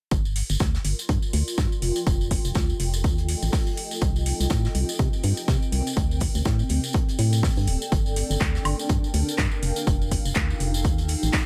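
A swung sixteenth-note groove in 4/4 drives this bittersweet, soulful piano house excerpt, built on a punchy, tape-warm electronic kick sitting up front with a layered house kit of handclaps, metallic hi-hats and woodblock that joins at 0.4 seconds. Beneath them a background soul drum kit adds hi-hat and a medium-tuned snare with a rolled-off top and a tight, pumping room, while a close acoustic tambourine joins alongside. The organ-like FM bass is hollow and dark, with a fast, percussive attack that decays, and it pumps with sidechain compression from its low register up front in the mix. From 1.0 seconds a granular cloud pad drifts in above, a blurred, detuned unison of sine tones with a slow attack, moving notch and its own reverb, breathing with the same sidechain pump. The harmony cycles through Gm7, F9, Cm7 and D7sus4 before returning to Gm7 and F9, and the overall sound stays dry and close.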